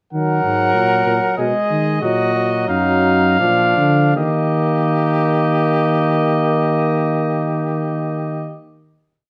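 A warm, distant trumpet leads this brief classical canzona for brass quartet, carrying the melody high between Eb5 and Gb5 with a roomy, up-front presence. Beneath it, a bright, close-miked trumpet with light vibrato sings a second line, a clear, present trombone fills in the accompaniment, and a mellow bass trombone with a soft attack, smooth top and light vibrato anchors the bass from up front. Each of the four plays its own strand of imitative counterpoint in 3/4 and Eb minor, moving through a compact progression before resolving onto a bright Eb major chord at 4.2 seconds. The pace slows steadily from the opening until 5.4 seconds, and the final chord holds to the close of the piece at 8.9 seconds. A wet stone room reverb gives the ensemble a resonant space, lending the contemplative yet driving piece a ceremonial air.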